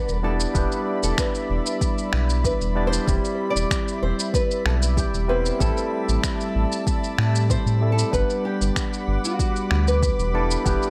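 A light reverb surrounds this sunny, blissful sunset chillout excerpt, where a small fingerpicked nylon-string guitar carries the melody through a digital delay over a barky, lightly overdriven tine electric piano with 12-bit sampler grit. A lush, detuned unison pad with chorus holds the chords from Em7 through Cmaj7/E, Am7 and Gmaj7, while a glassy harmonics texture drifts far in the background. Underneath, a round, dark analog bass sits up front beside a deep, overdriven electronic kick drum and a gritty, tape-toned electronic shaker with finger snaps.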